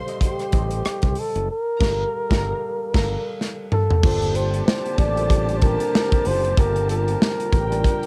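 A swung sixteenth-note groove at 94 BPM in 4/4 drives this smooth, cinematic slice of lush 1970s-style soul in G minor, built on an up-front acoustic drum kit with a tight kick, a bright, growly fingered electric bass and a worn, slightly out-of-tune tine electric piano, lightly overdriven, in the background. A dark, breathy flugelhorn carries the melody with vibrato over a soft-attack violin section, both colored by cassette tape and plate reverb, while a band accent lands at 1.5 seconds and a drum fill leads into the second half. At 4.0 seconds a very quiet sul tasto string section holds sustained chords and a pop-style horn section adds stabs as the harmony settles on Gm11, the whole cut carrying the light-reverb feel of a home cassette recording.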